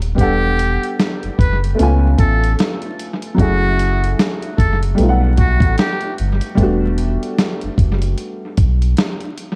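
Swung sixteenths at 75 BPM drive this nostalgic, reflective lo-fi hip hop excerpt in E minor, where a gritty, compressed sampler-style drum kit with a thumpy kick and analog delay sits up front beside a deep sine-and-triangle sub bass with octave, while a dark, woody, slightly detuned upright piano with audible action noise plays accompaniment through a low-pass filter, and a breathy, buzzy trumpet in a metal mute carries a close, whispered jazz solo with scooped notes and light vibrato from 0.2 to 6.1 seconds, the whole track set in an echo-heavy mix of vinyl crackle, light reverb and digital ambience.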